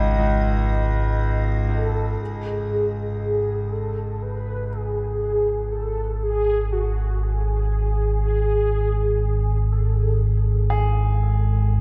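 The recording sits in a cavernous cathedral reverb, a passage cut from a longer piece of dark, desolate ambient drone. A deep, ominous drone rumbles up front throughout, blending triangle and sawtooth tones, with a filter sweep through the opening section while a G#5 chord hangs over it. An icy, crystalline glass pad with chorus shimmers high above until 2.2 seconds, when the harmony falls away and the longer second section begins. A brilliant grand piano, set low in the mix, spins arpeggios through tape echo across the whole passage, intimate enough that its action noise is audible. From 1.7 to 10.2 seconds a round, horn-like synth lead carries the melody up front, softened by ensemble chorus, vibrato and tape echo.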